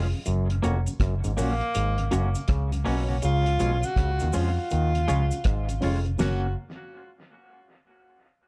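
A swung 81 BPM roots reggae groove in F# major, cut from a longer piece, rests on a dry, cloth-damped drum kit with dub echo and a round, foam-muted electric bass sitting up front, while a semi-hollow electric guitar with tremolo and tape echo, an overdriven clav riff through auto-wah, a detuned, phased dub chord stab in the background, a very quiet rotary tonewheel organ and a faint cabasa build an uplifting mood before a soft-attack tenor saxophone with vibrato and tape echo enters at 1.4 seconds to carry the melody through a dark, lightly reverberant mix that moves from F# to C# at 3.2 seconds.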